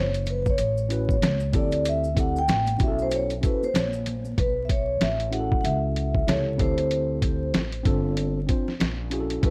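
Mellow and smoky, this jazz-hop cut from a longer piece moves at 95 BPM with a 16th-note swing, as a metallic, ringing vibraphone with slow motor vibrato and analog delay takes a solo over the first 4.4 seconds, above a woody, growly pizzicato upright bass. A muffled, pitched-down sampler-style drum kit with a thumpy kick and overdrive sits up front, while bright maracas and congas linger in the background until 4.4 seconds, and a clean tine electric piano enters at 0.9 seconds to voice suspended ninth chords like B9sus4 and D9sus4. The dry, gritty recording carries vinyl crackle and studio reverb.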